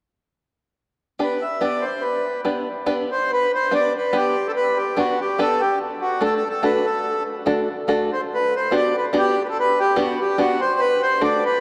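A reedy, airy accordion carries the melody up front in this short fragment of a musette waltz, moving between F#4 and E5 from 1.2 seconds until 11.6 seconds. Beneath it, an open-back banjo, also up front, supplies fingerpicked accompaniment with a twangy, plunky, percussive bite, holding to the range of A3 to B4 and stopping at 11.4 seconds. The tune sits in G major at 144 BPM in a straight 3/4, with a whirling, charming lilt. The harmony rests on G, moves to D, then to Gmaj7, and returns to D, with a new section beginning at 3.3 seconds. The whole recording is bathed in a wet cathedral reverb with a long 5.7-second decay, placing the duo in a vast, echoing space.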